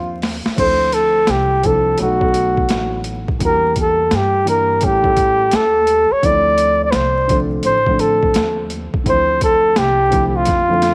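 Mellow and smoky, this excerpt of jazz-hop moves at a relaxed 85 BPM in 4/4 with a swung sixteenth-note feel, set in D minor. A breathy, whispered flugelhorn carries the melody up front in an intimate jazz style, its soft attack, scooped notes and vibrato giving the solo a hushed quality. Underneath, a dark concert grand piano adds smooth, vintage-toned accompaniment with short sustain, while a woody pizzicato upright bass anchors the low end. A gritty, compressed boom bap drum kit with a thumpy kick, high-tuned snare, hi-hat and crash cymbal enters at 0.2 seconds, sounding pitched down and overdriven, and a drum fill arrives at 10.5 seconds. The harmony cycles through Dm9, B7, Em7b5 and A7 before returning to Dm9, all wrapped in light reverb, small room ambience and a layer of vinyl crackle.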